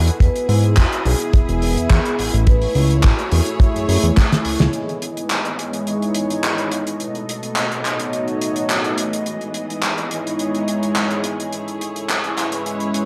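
A straight 4/4 nu-disco groove opens with a tight, up-front kick and fat analog bass pumping under a damped 70s kit of snare, hi-hat and handclaps, while a mellow, ringing vibraphone with soft mallets sits in the background and a detuned pad moves through Emaj7 and Amaj7. The kick drops out at 4.3 seconds during a drum fill, and after a band accent the bass stops at 4.7 seconds. The biting, bowed string section carries on under a filter sweep, with the pad and kit carrying the sunny, groovy mood through B7 and back home. This is a short cut from a longer piece.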